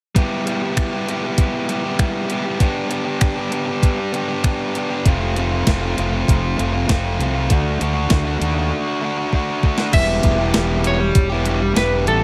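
An overdriven electric guitar riff opens this cool, restless indie rock cut, joined at once by a clean 12-bit drum machine with a thumpy kick, medium-tuned snare, finger snaps and crash, pushed up front with overdrive, while a growly fuzz bass arrives at 5.1 seconds under the Em, G, F, D progression, and as a drum fill draws to a close, a bright, clean semi-hollow guitar melody enters at 9.9 seconds, all set in light reverb.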